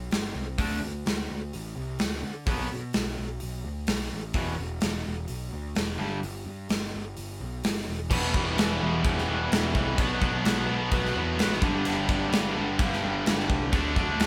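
This track sounds like a band playing live in one room, with moderate studio reverb and a gated, stone-room drum sound pushed up front. It is driving, aggressive hard rock in a straight four, cut from a longer piece. The gated 80s kit delivers a punchy kick, a medium-tuned snare, hi-hat and bright crash cymbals, while a picked electric bass, warm and fuzzy, runs from the opening moment. At 0.6 seconds, two overdriven, picked electric guitars, a cranked stack guitar and a distorted electric guitar, enter with a riff from the background. At 8.1 seconds a new section begins on a chord sequence that opens on E minor, and a tight, double-tracked distorted guitar adds a third riff layer to the mix.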